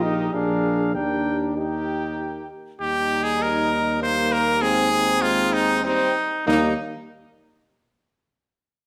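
A wet stone-room reverb surrounds this short, stately classical brass quintet passage in Eb major, moving at 97 BPM in 3/4 and cut from a longer piece. A warm trumpet carries the melody up front, while a very quiet, soft-edged, close-miked flugelhorn traces a second line beneath it. A clear French horn and a trombone with a smoothed top share the accompaniment over a tuba bass, and these three, along with the flugelhorn, sing with light vibrato, the horn bright and clear and the others mellow in tone, as the harmony passes from Bb7 to Eb and through Ab/Eb before returning to Eb at 6.5 seconds.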